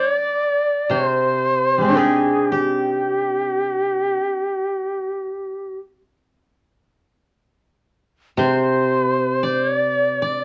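Japanese traditional chamber music, austere and calm, moves in a slow, rubato 4/4 around 56 BPM in this short excerpt cut from a longer piece. An up-front, bright, reedy shakuhachi carries the melody with airy breath, vibrato and tongued chiff, while one woody, fingerpicked koto plays a second line beneath it and another, mellower koto enters at 0.9 seconds with a low accompaniment. Moderate studio reverb surrounds the ensemble, and the worn cassette sound adds a warbly pitch drift.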